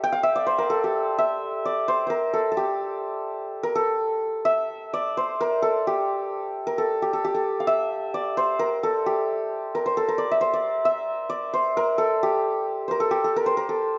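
Indian classical excerpt in a meditative, longing mood, where a solo santur, up front and shimmering with a ringing, hammered tone, plays in seven across fourteen seconds in a moderate scoring-stage reverb while the pace gradually speeds up.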